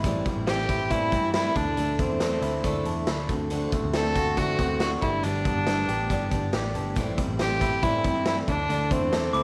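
Jangly indie pop at 139 BPM in A dorian, restless and bittersweet, where a raw, gritty garage drum kit with a boomy kick and a vintage foam-muted electric bass play alongside a bright dreadnought acoustic guitar with finger squeak and twangy, slightly broken-up electric guitar arpeggios over Am7, Dsus2, D7 and G, while an up-front, earthy violin with light vibrato and slapback echo carries the melody from 0.5 seconds and a ringing, bell-like glockenspiel sounds only at 9.3 seconds in this short cut from a longer piece.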